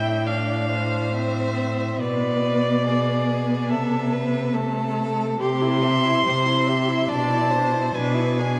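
The pulse is a flexible, rubato 4/4 that breathes with the phrasing, giving this solemn, melancholic slow romantic movement for string quartet an unhurried, sighing gait. Over the full 8.6 seconds, the first violin carries the melody in its upper register, smooth and even with a silken top, sitting up front alongside the cello, which anchors the bass with the same polished, steady tone. Beneath the melody, the second violin traces a smooth second line, while the viola's accompaniment sounds more distant and expressive, colored by portamento slides. All four players bow with vibrato, and their combined sound is rich and full-bodied. A long church reverb with a 3.7-second decay surrounds the ensemble, lending the passage, cut from a longer piece, a spacious, devotional glow.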